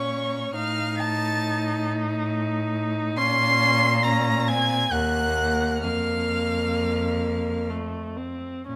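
Solemn and yearning, this slow romantic string quartet movement unfolds in 3/4 at around 61-70 BPM with a flexible, rubato feel, in a passage cut from a longer piece. A single violin carries the high melody with a rich, vibrato-laden tone, soft attacks, expressive portamento and a bowed line that sings above the ensemble. A second violin traces a smooth, even second line in a clear voice just beneath it. The viola fills the accompaniment with a clear, airy bow, light vibrato and an intense, up-front presence, while the cello anchors the bass with a rich, focused, close sound warmed by vibrato. The harmony moves from Bbm through F7/A and back, then to Ebm and Fsus4 before settling on F at 7.7 s, where both violins stop and the viola and cello sustain alone until 8.8 s. Close, detailed microphones catch every nuance of the bows, framed by a moderate recital hall reverb.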